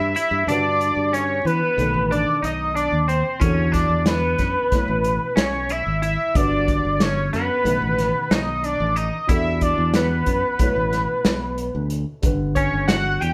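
An octave-doubled sawtooth lead, bold, detuned and retro with chorus and vibrato, opens this intricate, bright progressive instrumental in 9/8 alongside a clean, compressed semi-hollow guitar with vibrato on the second line, a dark, mellow grand piano in the background and a punchy fingered electric bass up front, with a smooth soul drum kit of hi-hat, punchy kick and snare joining at 0.2 s as the band cycles through Gmaj7, Baug7, Em11 and B9sus4 in a reverberant room.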